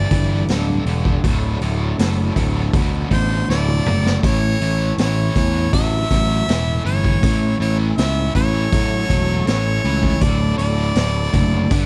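A gritty, raunchy blues rock and southern rock power-trio excerpt at 80 BPM in D major opens with a clear, punchy harmonica melody carrying overdrive and slapback echo over a bright, double-tracked cranked stack guitar riff with harmonic tremolo, a growly, amped picked electric bass up front, and a very quiet, thick tonewheel organ holding sustained chords through a slow rotary speaker with key click, while a raw garage drum kit with a boomy kick and rolled-off top joins at 0.1 seconds and plays a fill at 3.5 seconds as the chords move from G5 to D to A and back to D, all captured as a dry, close 1970s-style small-room studio recording.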